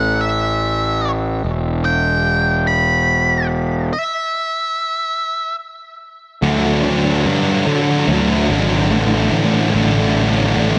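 Moving in a slow, straight 6/8 lilt, this hopeful, soaring post-rock passage is cut from a longer piece. A dark, distorted octave-fuzz lead guitar carries the melody up front from the opening until 5.6 seconds, its high line trailed by tape echo. Beneath it, an overdriven, fuzz-laden electric bass holds the low end throughout, its picked tone warm and direct from the amp. A stop falls between 3.9 and 6.4 seconds, and then a thick, bright, double-tracked fuzz guitar riff enters at 6.4 seconds to drive a build-up to the end. Light reverb and a digital ambience surround the parts, while the harmony moves from an open-fifth chord toward D major and a suspended A chord.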